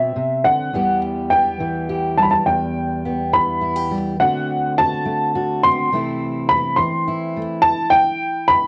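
A folk fragment in a straight 6/8, cut from a longer piece, with a yearning, bittersweet mood and a home-cassette intimacy in a small booth-like room. A dark upright piano carries the melody up front, its woody, slightly detuned tone mellow and close, with the action noise audible, while a fingerpicked steel-string acoustic guitar supplies a low, shadowy accompaniment. The harmony drifts from minor chords through a D7 before the chords fall away near 7.7 seconds.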